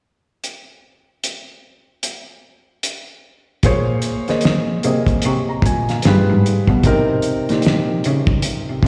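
Soulful and late-night, this neo-soul R&B cut opens with a cloth-damped, thuddy drum kit playing alone, its fat snare and tight kick sounding muffled and gritty up front with a lo-fi, small-room character. At 3.6 seconds a warm concert grand piano with deep bass, short sustain and a slapback echo joins up front, while a bowed cello with light vibrato and a nasal, earthy tone takes the bass line from a distance as the chords move through Bbm9, G7b9 and Cm7. The whole thing comes across like a live gig heard through a venue's PA, with recital hall reverb and light studio ambience.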